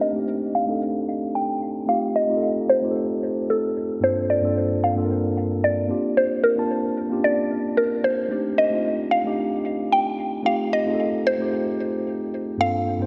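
A woody, round mallet-like synth pluck carries the melody in this soulful, hypnotic amapiano excerpt at 112 BPM in C dorian. Its percussive, decaying notes are colored by chorus, phaser, a low-pass filter and tape echo. Beneath it, a mellow tine electric piano sits up front with clean, direct accompaniment over a Cm69, F7, Gm11 and Bb6 progression, while a filter sweep runs through the full 13.1 seconds and a plate reverb soaks the dreamy mix, with swung sixteenths giving the 4/4 pulse a lilt.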